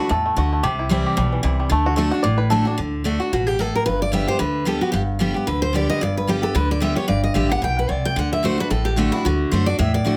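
Lively and joyful, this swung bluegrass passage opens with a twangy, percussive five-string banjo played with fingerpicks, which carries the melody over a full-bodied picked acoustic guitar and a woody, thumpy pizzicato upright bass. The banjo's turn ends at 2.8 seconds, and at 3.3 seconds a bright, up-front picked dreadnought guitar takes over the lead. Close, detailed microphones and light reverb give the acoustic instruments an intimate presence in this brief cut from a longer piece.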